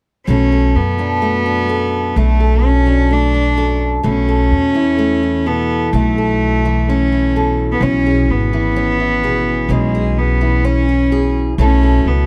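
From 0.3 s a bowed, reedy cello with a gut-string, period-style tone carries the melody up front, alongside a fingerpicked steel-string acoustic guitar with fresh strings and audible finger squeak, and a woody, growly pizzicato upright bass, also up front. This haunting, melancholic folk fragment moves at a slow 64 BPM in straight 4/4, in B dorian tuned to A4 = 435 Hz, passing from Bm7 through Asus2/B and C#m to F#m7/B. Close, detailed microphones and little reverb give the trio an intimate, dry presence.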